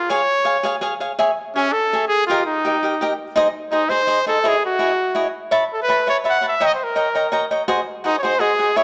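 Set in a dark mix with a moderate recital-hall reverb, this brief fragment of proud, romantic Mexican folk music in 3/4 at 166 BPM with a rubato feel puts a bright, classical-style solo trumpet with light vibrato up front on the melody from 0.0 seconds, joined at 0.1 seconds by a crisp, picked acoustic cavaquinho, also up front, whose accompaniment moves through chords such as C#m, G# and C#madd9 to a closing G#7.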